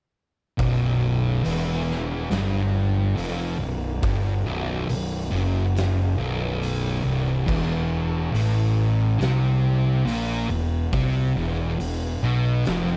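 A straight 4/4 pulse at 70 BPM drives this hypnotic, heavy stoner and doom metal passage, tuned to A4 = 436 Hz, where from 0.6 s an up-front picked fuzz guitar riff and a second distorted fuzz guitar set further back move from B5 to E5 at 7.5 s over an overdriven, amped fuzz bass and an oversized, low-tuned, saturated and gritty acoustic kit with a boomy kick, fat snare, crash and hi-hat in a big, pumping room, all within a dark, warm production with moderate reverb.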